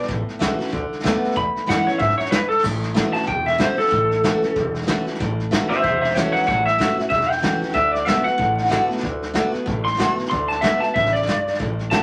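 A twangy, slightly broken-up electric guitar, a full-bodied dreadnought acoustic and a soft brush kit start together at 0.0 seconds on this rowdy, rollicking rockabilly excerpt, with a swung feel and a woody, thumpy upright bass joining at 0.1 seconds. The compressed electric guitar carries the melody up front through a small old amp, colored by a vibrato effect. The chords move from A6 through D6 and E6. From 2.6 seconds the clean electric guitar takes a solo that runs to the end of the cut. Beside it, the picked steel-string acoustic rings with fresh strings and a little finger squeak, while the gut-strung bass stays dark and pizzicato. The brushed drums sound natural and small-roomed, with a medium-tuned snare, a tight kick, hi-hat and crash, all set in a moderate club reverb over a layer of vinyl crackle.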